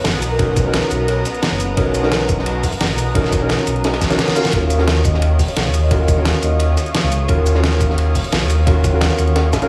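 A detuned sawtooth bass sits up front in this uplifting liquid drum and bass excerpt at 174 BPM, its saturated, menacing tone evolving through a filter swell over a sustained low register. Beneath it, an overdriven electronic kick enters at 0.4 seconds with a knocking punch, layered with a pop kit whose deep snare, hi-hat and shaker carry the same overdrive, while a crunchy breakbeat kit with dark cymbals and a high-tuned snare sits gritty and rolled-off in the background. A grand piano supplies intimate, natural accompaniment, its action noise audible and its notes trailed by digital delay. A lush, thick unison pad holds the chords, moving from Bmaj7 to D#m9 at 4.4 seconds, its vintage warble coloured by chorus, 12-bit sampler grit and sidechain pumping. A mellow vibraphone with soft mallets floats brief, airy phrases set in dub echo at the opening and again from 4.8 seconds, and around 4.1 seconds a very quiet reverse cymbal joins a drum fill, all within a light small-room ambience.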